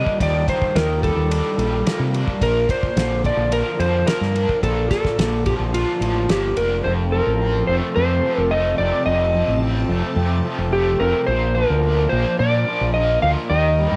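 A hazy, hypnotic psychedelic rock excerpt opens with a dark, up-front electric slide guitar melody carrying slapback echo, set over a bright, double-tracked, overdriven stack-guitar riff with harmonic tremolo and a very quiet, swirling phased string machine holding sustained chords, as a growling, punchy fingered bass enters at 0.2 s and a cloth-damped, thuddy drum kit with a fat snare and dark cymbals plays until 6.7 s, under a light reverb.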